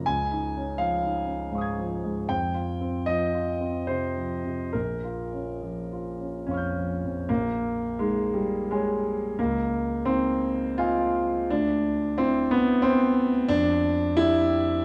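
A close, detailed recording with a moderate 1.9-second reverb frames this hazy, mysterious impressionist solo piano excerpt in Bb dorian, where a warm concert grand with deep bass, an open tone and long sustain sits up front, ranging from Bb1 to Ab6, in a rubato 3/4 drifting between 68 and 92 BPM through chords like Dbadd9, Bbm6, Dbmaj9 and D9sus4 before reaching Fmaj7sus2 at 13.5 seconds.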